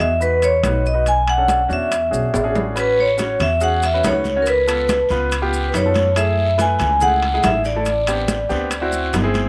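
This lively, danceable Afro-Cuban jazz excerpt at 141 BPM in A major opens with a bright, metallic vibraphone melody with slow motor vibrato up front, over an intimate, polished grand piano with audible action noise, woody pizzicato upright bass, and damped, hard-hand congas and grainy maracas sitting in the background. Ringing metal-shell timbales join at 0.4 seconds, and a drum fill leads into a new section at 2.8 seconds, where a raspy, distant guiro enters. The harmony moves through rich colours such as Emaj7(no3), A69, C#aug7, F#m9 and Am11, all set in moderate spring reverb with small room ambience.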